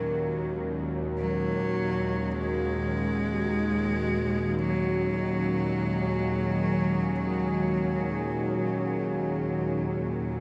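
A huge, wet reverb with a long tail surrounds this desolate, unsettling dark ambient drone in Eb minor, which drifts in free time across a 10.4-second stretch cut from a longer piece. Up close, a single bowed cello carries a narrow melody with light vibrato and an airy, earthy tone, haloed by shimmer reverb and a diffuse delay. Alongside it, a deep, detuned pad with chorus and a sub octave holds sustained Ebm chords, while a tense, string-like drone with ring modulation and a noise layer sits low and up front throughout.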